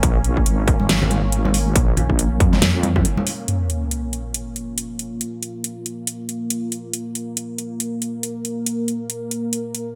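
A compressed, up-front wobble bass built from sawtooth and sine tones, with chorus, anchors this heavy, meditative deep dubstep excerpt at 139 BPM in Bb minor, riding a swung half-time feel alongside a distorted electronic kick that stops at 3.0 s. A layered kit of huge snare and metallic hats carries on, soft-handed congas ring with dub echo in the background, and a sub drop hits at 3.5 s, while a moody, detuned ambient pad with slow attack and long release sustains dark chords through to 10.0 s. Light reverb and digital ambience lend a bright 1980s-style digital sheen.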